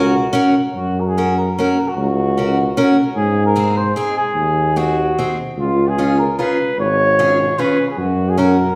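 Alpine folk in the manner of an alpine dance band, this short, bouncy and festive clip in 3/4 is cut from a longer piece. A mellow, punchy flugelhorn carries the melody in a classical style, with a roomy, distant quality even while sitting up front. Beneath it, a picked steel-string acoustic guitar on old strings supplies accompaniment with a woody, boxy parlour character. A warm, present tuba holds down the bass line, also played in a classical style, and all three parts sound together from the start. The harmony moves from F# to G#7 at 3.2 seconds and C#7 at 5.6 seconds before settling back on F#, all wrapped in the wet reverb of a recital hall heard from further back in the room.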